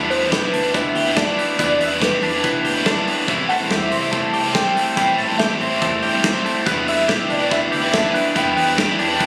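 A brisk, bright and breezy slice of jangly indie pop at 142 BPM opens on an up-front crunchy overdriven guitar, chiming twelve-string electric arpeggios with twangy, compressed sparkle and slapback echo, and a dark, round foam-muted bass sitting in the background, all moving from Em7 to Am7 and back. From 0.1 seconds a velvety, full-bodied synth lead carries the melody with sustained, vibrato-tinged notes thickened by chorus and slapback echo, while a loose acoustic drum kit with a tight kick and medium-tuned snare pumps in a small room. The whole piece, a short cut from a longer track captured on a phone in the room, sits in a light studio reverb.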